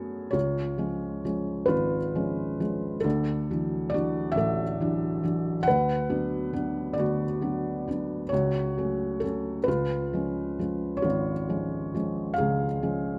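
Classical, lyrical solo piano in a wistful, reflective mood, moving at a slow 45 BPM in 6/8 with a free, rubato feel and tuned to A4 = 445 Hz. A felt-muted upright piano plays alone from start to finish at 13.2 seconds, its dark, mellow tone and thick felt giving an intimate, hushed quality. Close, detailed microphones in light reverb capture audible action noise, and the harmony drifts from C# through Dadd9, Bm/D and F#m/C# before settling back on C# in this fragment of a longer piece.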